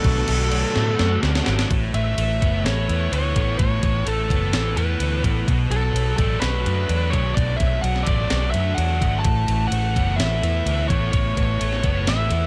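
A round, foam-muted vintage electric bass sits up front in this wistful, blissful shoegaze and dream pop rock excerpt, beneath a distorted fuzz lead guitar melody with digital delay, a crunchy overdriven guitar riff washed in reverse reverb, a thick fuzz guitar riff thickened by analog chorus, a clean 12-bit drum machine with a thumpy kick and tape-tinged sampler character that plays a fill from 0.8 to 1.7 seconds, and a silky, nasal analog string pad heard only until 1.7 seconds, in a dark, dry production.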